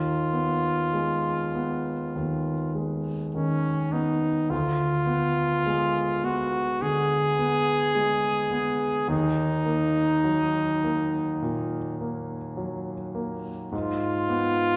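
A clear, smooth-topped trumpet carries a yearning, melancholic melody in classical style from the front of this romantic duo in Eb minor, moving at a rubato 52 BPM in 4/4. A polished concert grand piano accompanies with deep bass, long sustain and audible action noise, giving an intimate, present feel as the harmony passes from Fm7b5/Eb through Ddim7 to Ebm and finally Abm at 13.7 seconds. Both sit in a wet recital hall, heard from further back in the room, in this short passage cut from a longer piece.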